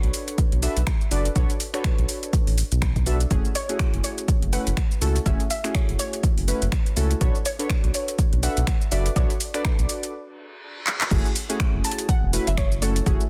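Moody, swung deep house opens on detuned analog keys playing chorused, delayed stabs over a round, dark bass, both pumping with sidechain, while an overdriven kit of metallic hi-hats, shaker, finger snaps, handclaps and crash runs beneath, and a punchy electronic kick lands up front from 0.4 seconds. A soft, gentle pluck carries the melody from 3.6 seconds with its own chorus and delay as the harmony moves between Bm9 and F#m9. A short break brings a reverse cymbal and a drum fill before the drop at 11.1 seconds, all set in a dense, heavily limited master with digital ambience.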